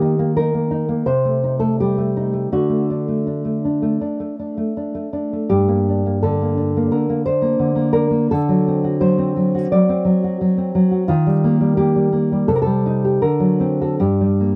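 This is a romantic piece for solo classical guitar, a brief cut from a longer work that feels intimate and passionate. A single nylon-string guitar carries everything across its 14.6 seconds, its rubato phrasing in 4/4 giving the line a free, speaking quality. The tone is dark and full-bodied, thumb-plucked notes reaching from G2 up to D5, with an audible finger squeak adding human detail. The harmony moves through Eb, Am7b5/C, D, Gm and D7 before returning to settle on Gm at 14.0 seconds. The sound is dry and close in the manner of a 1970s-style studio recording, the instrument up front in a moderate booth ambience.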